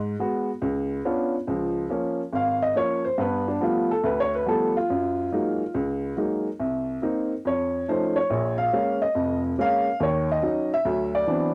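A home cassette recording with light reverb gives this short excerpt of solo jazz an intimate, slightly boxy character, with the upright piano sitting up front, its woody tone, long sustain and audible action noise all clearly heard. Swinging at 141 BPM in Db major, the sophisticated, playful solo runs through rich harmonies such as Db6, G9, Gb69 and F7b13, spanning F1 to F5 before ending on a D13 at 10.8 seconds.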